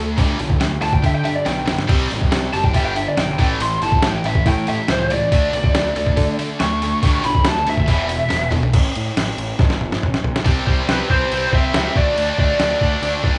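This is a live-in-one-room band sound with light reverb and a dulled top end that tops out at 11.0 kHz, cut from a longer hard rock piece. At 140 BPM in a straight 4/4, the mood is anthemic and swaggering, built on a bright, double-tracked high-gain guitar riff and a punchy, fuzz-drenched picked bass pushing through overdrive. Sitting up front is a compressed, pitched-down sampler-style boom bap kit, gritty with a thumpy kick, a medium-tuned snare, hi-hat, crash and toms, and it throws in several fills along the way. From 0.8 seconds a dark, lo-fi lead guitar through a small cranked amp solos high above the band with overdrive and tape echo, its solo running until 8.7 seconds. The harmony moves through G, C5, A, D5 and E5 before the chords drop away at 8.7 seconds, then returns on C5 and D5 from 10.5 seconds to drive the closing stretch.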